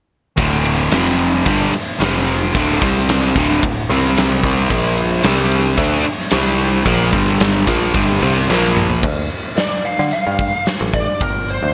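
A gritty, room-lit mix with light reverb opens this driving classic rock excerpt in D minor at 111 BPM, where an up-front overdriven semi-hollow guitar and a sludgy distorted guitar in the background pick out power-chord riffs until 9.0 s over growly picked bass and a huge arena kit with bright cymbals and a punchy kick, and after a drum fill a dark, wah-inflected fuzz lead guitar takes the melody from 9.6 s.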